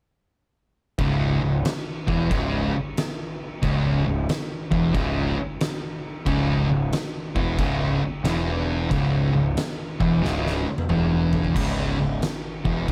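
A moderate large studio reverb surrounds this sludgy, brooding stoner and doom metal excerpt at 91 BPM in C# minor with a swung 4/4 feel, where two dark, picked fuzz guitars, one compressed and the thicker one up front, grind out a riff over a growly, overdriven picked electric bass and an oversized low-tuned drum kit with a fat snare and punchy kick in a gritty, saturated, bright stone room; all four parts enter at 1.0 s, and a drum fill at 10.2 s leads into a new section at 11.6 s.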